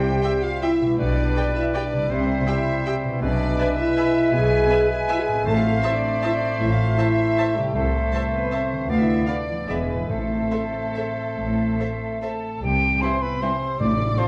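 A bittersweet, dark classical excerpt in A minor and 3/4, moving with a rubato feel between 134 and 173 BPM, where a soft-edged chamber violin section carries the melody in the background while a lush symphonic violin section, a clear oboe and a pure silver flute add second lines and a dark clarinet joins them from 12.2 seconds. Mellow bassoon and a focused viola section fill out the accompaniment, a French horn section holds sustained chords as the most prominent voice, ringing harp arpeggios sit behind, and cellos and double basses ground the bass with vibrato. Very quiet, dry timpani strokes on A mark moments such as 5.5 and 10.1 seconds, and the whole has a dark, warm production in a reverberant recital hall as the harmony passes from C through E7 to A minor.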